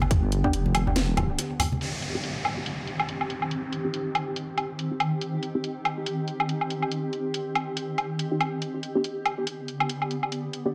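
Cavernous and dark, this deep dubstep excerpt moves at 141 BPM in a swung, half-time 4/4, centred on C harmonic minor with chords shifting from G to Cm and back to G at 8.6 seconds. A cloudy, evolving granular pad sustains detuned chords throughout, sitting up front with its own built-in reverb, while a garage drum kit runs the full length with a cracking snare, bright but low-passed hats and a woodblock. The opening is crowded: a deep, wobbling sawtooth-and-sine bass with chorus and thick-skinned, low-tuned congas drenched in dub echo both drop out by 1.8 seconds, and a tight, layered electronic kick punches only briefly near the start. A muted, mellow chord stab with a filter pluck, lush chorus, cassette-tape colour and analog delay weaves through most of the piece under filter sweeps, pausing before returning at 8.3 seconds. A short break arrives just before the main section, where a downlifter effect drifts in beneath the echo-heavy, spring-reverb-soaked mix.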